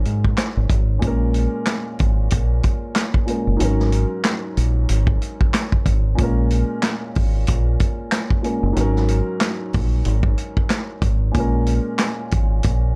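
A dark upright piano with a woody, cassette-filtered tone sits at the heart of this gritty boom-bap hip-hop cut in Bb minor at 93 BPM with a 16th-note swing, moving between Ab9sus4 and Bbm7 over a round, punchy fingered electric bass and an up-front vintage kit of punchy kick, medium-tuned snare, hi-hat and handclaps, all in a dry, dark production.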